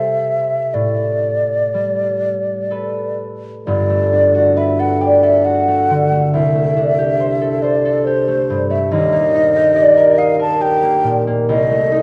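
In a lilting 3/4 with free, rubato timing that drifts between 59 and 72 BPM, this is a luminous, pastoral fragment of an impressionist classical duo for flute and harp. The concert flute carries the melody with an airy, hollow tone, tongued notes and vibrato, sitting up front. The concert harp supplies the accompaniment, fingerpicked and ringing across a deep-to-middle span, its bright acoustic sound placed just as close. The harmony moves through lush colours, from C6/9 and Am11 into Gmaj9 when a new section opens at 3.7 seconds, then back to C6/9, on to Ebmaj7 at 8.9 seconds, and finally to Cm6. The whole recording is bathed in a generous scoring-stage reverb and carries the worn, warbling pitch drift of old cassette tape, giving it a hazy, nostalgic patina.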